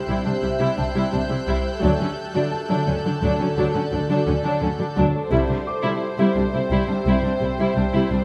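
Opening on a hushed violin section carrying the melody over a shimmering, ethereal pad with chorus, phaser and its own reverb, plus a clear high violin texture that stops at 4.9 s, this ominous, mysterious suspense-film cue in 5/4 draws in a warmer violin second line, murky violas and cellos with light vibrato, and a shadowy double-bass section all bowed sul tasto with soft attacks, while a very quiet felt-muted upright piano adds mellow high notes from 2.5 s, the whole fragment hanging on C and D chords in a moderate scoring-stage reverb.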